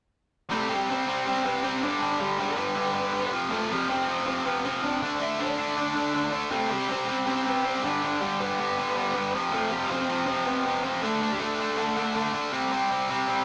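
Rowdy and rebellious, this punk excerpt charges along at 160 BPM in a straight 4/4, with a bright, double-tracked distorted electric guitar up front, picking an overdriven riff over a C5, G, F and D5 cycle from 0.5 until 13.4 seconds. Sitting further back, a dark, bluesy lead guitar carries the melody with distortion and tape echo, dropping out at 12.3 seconds. The rough rehearsal-room sound, with its tube saturation and moderate small-room reverb, gives the whole thing a raw, live-in-the-garage edge.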